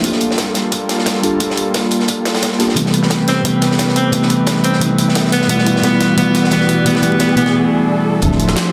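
Dreamy and lush, this liquid drum and bass excerpt at 176 BPM builds over Gm9, Am9 and Em9 chords, with a round FM electric piano and a chorused, warbling analog pad pumping against crunchy breakbeat drums, a gritty pitched-up jungle kit, a punchy very quiet kick and a faint riser, while an edgy alto saxophone with vibrato and dub echo sings from 3.3 to 7.5 seconds before a deep, rumbling detuned saw bass lands at 8.2 seconds, all bathed in a wet scoring stage reverb and a dense, heavily limited master.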